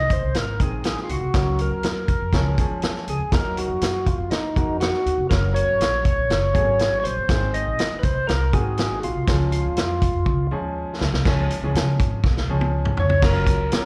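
A fat, lightly overdriven tonewheel organ carries the melody up front from the opening, its key click and percussive attack turning through a slow rotary speaker, while a clear, woody upright piano plays accompaniment beneath and a thumpy gut-string upright bass plays pizzicato underneath. A vintage kit with dark cymbals, a tight kick and a medium-tuned snare joins almost at once, adding drum fills at 10.3 seconds and again at 12.2 seconds as the joyful, uptempo 1960s-style soul groove moves into a brief new section and settles on a major-seventh chord. The whole band sounds like a live club gig heard through the venue's PA, with a light small-room reverb around it.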